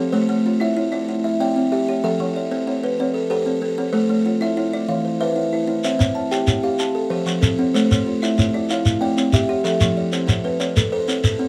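A dry, close-miked and intimate sound frames this warm, hypnotic southern African mbira-style excerpt in a straight 12/8, where a buzzing kalimba with a woody, airy ring sits up front beside a second, hollow-bodied kalimba with a boxy character, both weaving interlocking arpeggios over a circling Am–C–F cycle, with a grainy, band-limited shekere joining at 5.8 seconds.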